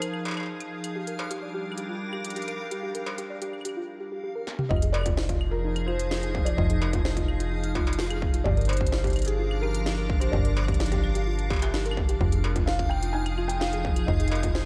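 A lightly reverberant mix opens this cerebral, melancholic IDM excerpt in F dorian at 128 BPM, where an icy, crystalline glass pad holds chorused chords over Fm7 and Gm7, a reversed, granular swelling texture shimmers in the background, and a tape-warm industrial drum kit of claves, smooth hats, toms, struck metal and a clanging snare sits in a small room with diffuse delay. A soft, round pluck adds chorused arpeggios from 1.0 seconds, and a felt-muted upright piano with boxy action noise carries a delayed, intimate melody. After a drum fill at 4.5 seconds, a metallic, up-front FM bass with tube saturation and a distorted electronic kick enter at 4.7 seconds, anchoring the low end.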